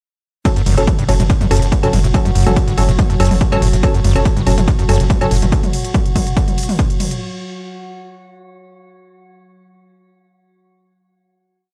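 A straight four-on-the-floor pulse at 142 BPM in 4/4 drives this short, hypnotic peak-time techno piece in F# minor, which plays as one drop from 0.5 seconds: a punchy, tape-warm electronic kick sits up front, while a techno kit adds smooth closed and open hats, ride and low tom with sidechain pumping. Underneath, a deep, saturated sine sub bass rumbles between the kicks on F#1, and a squelchy, distorted square-wave acid line drives an accented eight-step riff with resonant filter sweeps, both ending at 5.5 seconds. Crisp, detuned wavetable stabs move one chord shape in parallel in a dotted rhythm through analog delay, and from 1.3 seconds an eerie, metallic FM drone with chorus and reverb hangs over the gritty, cassette-tinged hardware sound.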